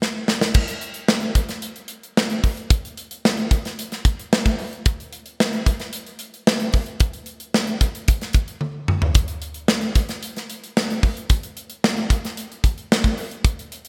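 A short drum fill opens this slick, nocturnal pop fragment at 112 BPM in a straight 4/4, leading into a polished, up-front acoustic studio kit of tight kick, medium-tuned snare, hi-hat, toms and crash cymbal, its airy small-room sound dressed in gated reverb and bright 1980s-style digital sheen, with a second fill arriving at 8.6 seconds before the groove runs on to 13.9 seconds.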